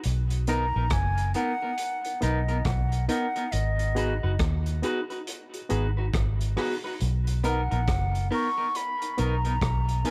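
Light reverb and a small-room ambience frame this short cut from a longer roots reggae piece, sunny in mood and set at 69 BPM in 4/4, with 62% swing on the sixteenths, in B major. A crunchy breakbeat drum kit plays hi-hat, kick drum and rim click, its sound dark and gritty with a punchy kick and a rolled-off top. A vintage muted fingered electric bass sits up front, round and foam-muted, moving between F#1 and D#2. From 0.5 seconds a concert flute carries the melody with a pure straight tone and crisp attack, trailed by tape echo. A clean, picked electric guitar with its own tape echo supplies accompaniment, and a reedy, barky electric piano, lightly overdriven through its built-in speakers, adds stabs. The harmony rests on Bmaj7, shifts to G#m7 at 3.5 seconds and returns to Bmaj7 at 7.0 seconds.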